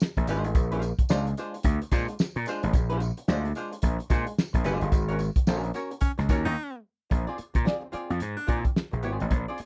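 A dry, up-front funk excerpt with a strutting, playful swagger at 110 BPM in Bb mixolydian, where a fat-snared, tight-kicked soul drum kit and a jingly background tambourine open at 0.0 s, a gritty overdriven slap bass and a dark, hollow-bodied archtop guitar through wah carry the Bb9 and Ab9sus4 chords, and a scooped, vibrato-laden baritone saxophone slips in at 6.0 s around a band accent and brief break before the return to Bb9.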